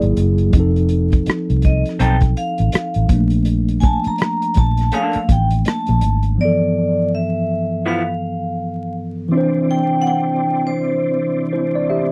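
A swung sixteenth-note groove from a dark soul drum kit with a punchy kick and a round, foam-muted electric bass drives this smooth, relaxed neo-soul R&B excerpt until both drop out at 6.4 seconds for a break, while a mellow tine electric piano holds the chords throughout, a metallic, ringing vibraphone with slapback echo carries the melody from 1.6 seconds, a slightly broken-up, lo-fi guitar adds a second line, bright, high-tuned congas sit in the background, and a smooth tonewheel organ with fast rotary speaker enters at 9.3 seconds, set in a close, dry 1970s-style studio sound with light reverb and vinyl crackle.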